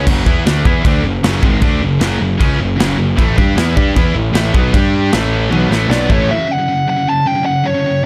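A nasal lead guitar with a parked wah cuts in up front at 5.9 seconds, its overdriven, picked line set high and trailed by digital delay, in this aggressive, dark heavy metal excerpt at 154 BPM in F# phrygian. Beneath it, a growly, fuzz-soaked electric bass sits up front with a direct-and-amped bite, while a modern studio drum kit drives the straight 4/4 pulse with a punchy kick, medium-tuned snare, crash cymbal and toms, capped by a drum fill before the section changes at 6.3 seconds. Three picked electric guitars stack the riff: a bright, high-gain distorted guitar carries it through to the end, a heavy high-gain guitar sits in the background, and a double-tracked, biting overdriven guitar sounds briefly at the start and returns in the background at 3.2 seconds. The harmony moves from F# minor through A and G power chords before landing on F#, where the riff guitar and lead carry the brief closing section alone. 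The production is dark and warm, framed by small room ambience.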